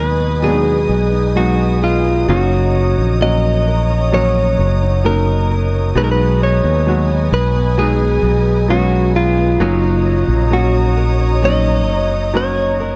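This is a slow pop ballad at 66 BPM in 4/4, cut from a longer piece, with a longing, emotional mood and chords moving between B6 and Gb6. A clean, compressed electric guitar recorded direct carries the picked melody from F4 to Eb5 throughout the 13 seconds. A clear concert grand piano with a worn, natural tone and short sustain plays the accompaniment beneath it. Sitting up front, a fretless electric bass gives a warm, direct and amped low end. A lush, woody string section holds bowed chords with vibrato, while a bright, fingerpicked nylon-string guitar adds very quiet classical arpeggios. Light reverb and small room ambience give the whole a dark, warm production.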